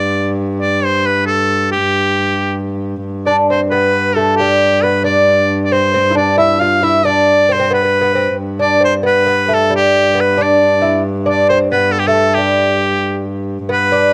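A dry, close small-room recording with a 1970s studio character frames this festive, rustic medieval dance in 6/8, an excerpt from a longer piece, where an edgy shawm with vibrato and scooped notes carries the folk-style melody up front over a rich, nasal viola da gamba drone on a low G, joined at 3.3 s by a mellow, fingerpicked lute with double strings playing a delicate second line.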